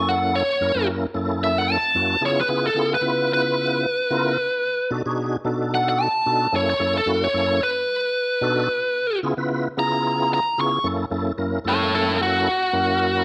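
Over a straight 4/4 groove, this gritty, soulful blues fragment, cut from a longer piece, puts a biting, bright electric lead guitar up front, soloing from 0.0 to 10.8 seconds with overdrive and a slapback echo. Beside it, a full tonewheel organ accompanies throughout, lightly overdriven with chorus vibrato, audible key click and a slow rotary speaker. The changes move through sharp-ninth dominant chords before a brief new section arrives at 10.8 seconds, all set in a moderate echo chamber reverb.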